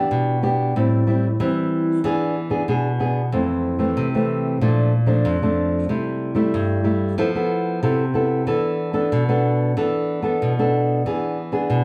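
Samba at 93 BPM in a straight 4/4, this nostalgic, yearning cut from a longer piece features a solo nylon-string guitar, thumb-plucked in a classical manner with a full-bodied tone and fresh strings. The guitar opens on a rootless Em7 and moves through Am7, E7, Fmaj7, Bbmaj7 and C6 to a Fmaj7#11, settling on E7sus4 and finally E7 at 11.1 seconds. A slapback echo on the guitar and a wet studio reverb accompany a sound heard from further back in the room.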